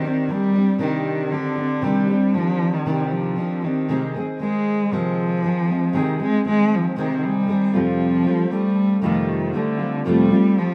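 A bowed cello and a fingerpicked steel-string acoustic guitar begin together, setting up a reflective, wistful pop piece in C minor at 117 BPM in a straight 4/4. The cello carries the melody in a fairly low register, its single player's tone nasal and slightly boxy, shaped by expressive vibrato and portamento. Beneath it, the double-tracked dreadnought guitar supplies a full-bodied accompaniment with the warm tone of fresh strings, and both instruments sit up front. The harmony moves from Cmadd9 to Ab/C at 3.9 seconds and settles on Fadd9 at 7.7 seconds, with the tuning pitched a touch high at A4 = 443 Hz. Light reverb and the ambience of a small room give the short passage, cut from a longer piece, the rough feel of a home demo.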